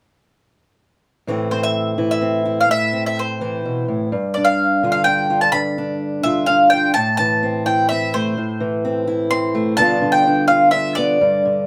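Folk in a yearning, stirring 3/4, cut from a longer piece, where a fingerpicked acoustic archtop guitar enters at 1.3 seconds with finger squeaks audible as it moves between Am and G7, and a woody, up-front mandolin with double strings joins at 1.5 seconds to carry the high picked melody, the two played live together in a small, reverberant room.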